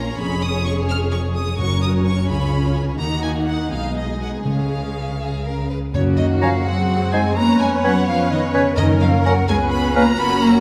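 A quick, lively classical-period movement for symphony orchestra in 6/8, moving at 85 BPM in dotted quarters with a graceful, rubato feel, taken from a longer piece. Rich, bowed violins with expressive vibrato carry the melody high above a focused second violin line, while a dark, smooth-topped viola section fills in the accompaniment. Beneath them, a close, even cello section and soft-attacked double basses anchor the bass, and round timpani struck with soft mallets sit in the background at 1.6, 4.5 and 8.8 seconds. At 5.9 seconds the second section opens as a dark French horn section enters with soft-attacked sustained chords, joined by an airy silver flute with crisp attack and lifted highs, then a punchy clarinet, a warm, soft-attacked oboe and a present bassoon adding background lines. The orchestra sits in the generous, wet reverb of a scoring stage, giving the harmony, which moves around F# major with C#7 turns, a spacious bloom.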